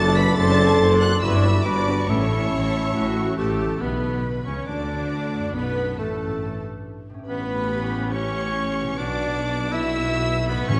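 Classical orchestral music: a cheerful, spirited fast romantic movement at 140 BPM in 4/4, cut from a longer piece in D major and tuned to A4 = 438 Hz. A lush, focused violin section carries the melody high above, while a second violin section, an airy flute section and a smooth-topped solo cor anglais weave second lines, joined briefly by a very quiet solo clarinet that drops out at 3.6 seconds. Violas supply a distant, bowed accompaniment, a dark, roomy French horn section holds sustained chords, and a very quiet, ringing concert harp is fingerpicked in arpeggios. The bass rests on a rich cello section, an even double bass section and a mellow tuba, moving through harmonies such as Gmaj7, Em7, A9 and Bm. A round, calf-headed timpani struck with soft mallets enters up front at 10.7 seconds, and the orchestra sits in a wet concert hall reverb with a rolled-off top.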